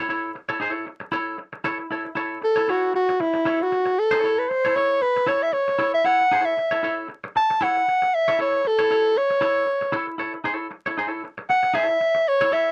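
A breathy, whispered soprano saxophone takes an intimate solo from 2.4 seconds over a clean, compressed semi-hollow electric guitar picking through F#m7 harmony, first voiced rootless, in this cool, hypnotic funk fragment with a light sixteenth-note swing, captured dry and close in a 1970s-style studio sound with vinyl crackle.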